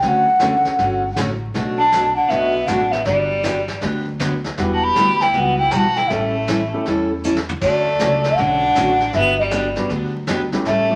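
Playful and swinging, this short country western swing cut features a mellow, hollow bass bansuri carrying the melody with airy vibrato over a full-bodied picked steel-string acoustic guitar, woody pizzicato upright bass and a vintage brushed drum kit with dark cymbals and a drum fill at 7.2 seconds, while a smooth background upright piano drifts in briefly before settling in at 4.6 seconds and a clear, bowed fiddle adds a second line from 1.8 seconds, all set in studio reverb with a touch of vinyl crackle.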